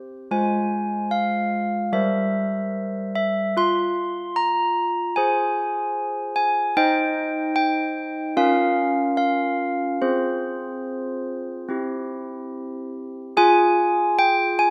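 Classical handbell tune in F minor at 74 BPM in a straight 4/4, solemn and wintry, with solo handbells ringing clear and bell-like from G3 to C6, close-miked, full and up front with medium clappers, moving through chords from Fm/Ab and C7/G to Bbm/Db before returning to Fm at 13.4 seconds, all set in a moderate concert hall reverb in this short cut from a longer piece.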